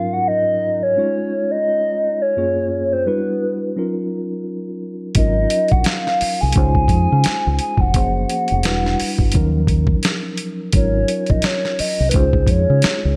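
A hollow, woody synth lead with a clarinet-like tone carries the melody from the start, its soft, warbling voice touched by chorus and slapback echo over a mellow tine electric piano that moves through lush chords like Ab13sus4, Gbmaj9 and Ebm9. At 5.1 seconds a gritty, pitched-down, tape-warm boom bap kit arrives with a thumpy kick and medium-tuned snare, joined at 5.2 seconds by a deep, round fingered bass that sits dark and punchy beneath. This smooth, soulful neo-soul R&B cut moves at a relaxed 86 BPM with a gentle swing, wrapped in light reverb.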